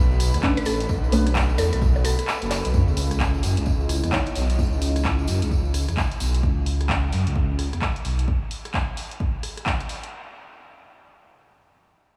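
A skippy, late-night two-step UK garage excerpt. A dark, rumbling detuned saw bass sits up front under a punchy kick and an analog drum machine's bongos, handclaps, hi-hat and rim click, with a jingly tambourine on top. A soft, warbling chord stab, a woody mallet-like pluck and an airy, breathy pumping pad ride over Bm9 before a sub drop lands at 2.7 seconds. From there, filter sweeps move through the bass and stab, and a moody ambient pad briefly shades the C#m9.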